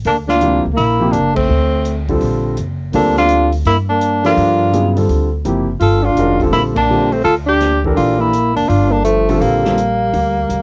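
A vibrato-rich tenor saxophone with scooped notes leads this intense, cool modal jazz excerpt, shadowed by a second tenor saxophone whose breathy, whispered subtone carries a cassette-tape grain. An up-front grand piano with audible action noise comps from 0.4 seconds, while a woody, growly pizzicato upright bass and a distant, roomy big-band drum kit with dark cymbals and a punchy kick keep a swinging pulse. The band hits accents at 1.3 and 6.7 seconds, all within a light reverb and the character of a home cassette recording.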